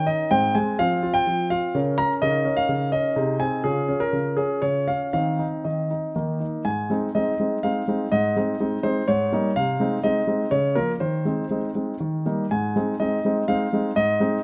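A clear grand piano carries this short solo passage from a classical-period sonatina, sitting up front in an intimate, natural sound where the action noise of the instrument is audible. The mood is dramatic and serious, with the music moving in triple metre and shaped by a flexible rubato feel. The piano spans from the low bass register up into the upper treble, and its harmony moves through major and minor chords with inversions, settling back onto the home chord near the end. A new section begins at 6.7 seconds, and the passage is cut from a longer piece, closing at 14.4 seconds. Close, detailed microphones capture the instrument, while a moderate recital-hall reverb adds a sense of space around it.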